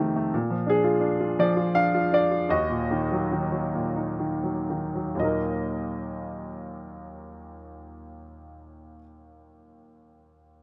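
A clear, up-front grand piano plays alone in this brief classical excerpt, a lyrical, brooding piece in Eb harmonic minor and 3/4 time, moving with a rubato feel between 58 and 86 BPM. The opening phrase slows from 0.3 to 5.2 seconds, with the harmony settling from Bb7 onto Ebm, before a new passage begins at 5.2 seconds. The piano spans a low Eb2 up to F5, set in light reverb.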